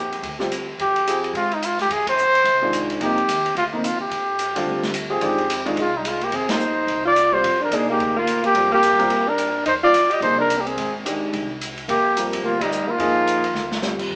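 A breathy, mellow trumpet sits up front with scooped notes and a smooth top, carrying the melody through this hypnotic, spiritual modal jazz excerpt, swinging briskly at 216 BPM. Woody pizzicato upright bass, an airy drum kit with dark cymbals and a boomy kick, and a natural grand piano support it, while an alto saxophone with vibrato and a warm subtone enters at 5.2 s as a second line. The band plays live together in a large studio with moderate reverb and a small-speaker sound, punctuated by group accents and a drum fill at 13.5 s.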